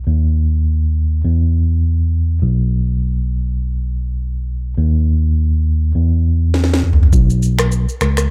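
The rhythm sits in 4/4 at 102 BPM with a loose, swung sixteenth-note feel, giving this short afrobeats excerpt in B major a breezy, joyful lilt. A clean, warm tine electric piano carries the bass role from the first second, playing low in its range and sounding up front as if heard through its own built-in speakers. At 6.5 seconds an electronic, produced afro-pop drum kit arrives with a fill. This leads into a new section at 7.1 seconds, where the kit's knocking kick, sharp snare, toms, finger snaps, rim clicks and shaker play alongside the piano. The kit carries the close character of a re-recorded small room and sits up front. The overall sound is dry, with little reverb, and the piece is cut off at 8.3 seconds.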